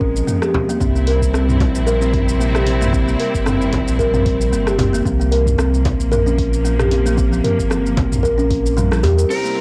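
A swung 113 BPM groove in 4/4 drives this hypnotic, meditative organic downtempo excerpt, with an overdriven electronic kick sitting in the background under a deep house kit of hi-hat, rim click, shaker and toms, both with cassette grit and a small-room re-recording, while a deep, dry frame drum struck with hard hands adds weight from 0.5 seconds and the band accents at 8.9 seconds. A woody, hollow kalimba plays up-front arpeggios through a low-pass filter and tape echo, above a round sine sub bass and a lush, distant bowed string section with vibrato, both carrying sidechain pumping, over chords moving from Bbm to C7 to Bb5. At 9.3 seconds a dark, clean lap steel guitar with slide and volume swells appears with 12-bit sampler grit, joined by an electronic downlifter and a very quiet, metallic bronze singing bowl with slow beating, all in a light reverb with a home-cassette character.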